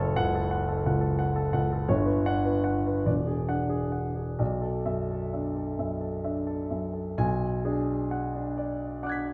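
Unfolding in a rubato 6/8, this short fragment of impressionist solo classical piano has a mysterious, nocturnal mood. A warm concert grand sits up front with a deep bass, ranging from E1 to B6 as the harmony drifts through F#m, Gmaj7#11, E9 and Bm7 before a new passage settles on Bm6 at 7.2 seconds. A wet recital hall reverb surrounds the instrument until it ends at 9.3 seconds.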